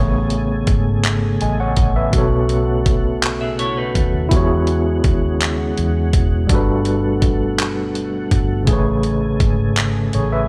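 A barky, overdriven tine electric piano sits up front through a combo amp, its fast tremolo and slapback echo colouring the accompaniment. Beneath it, a smooth tonewheel organ holds sustained chords with chorus vibrato and a slow rotary speaker, while a dark, round, foam-muted electric bass anchors the low end. A compressed, sampler-style soul kit of handclaps, hi-hat and a thumpy kick enters at 0.3 s, gritty and up front. A clean, picked semi-hollow guitar slips in briefly as a second line from 3.4 s to 4.3 s, touched with subtle chorus and slapback echo. This sensual, slow six-eight R&B excerpt drifts through Amaj7, Bsus2, E69 and Gmaj9 before returning to Amaj7, heard as a live gig through the venue's PA with club reverb.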